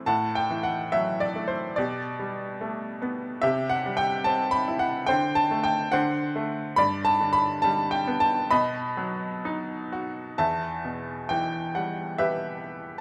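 A moderate recital-hall reverb surrounds an intimate, woody upright piano, up front with audible action noise and a slightly detuned, brilliant edge, as it plays a calm, warm classical solo in supple rubato, moving from Am6 through Gadd9/B, C, D5 and G to B before turning to a new section on Em at 10.4 seconds in this fragment of a longer piece.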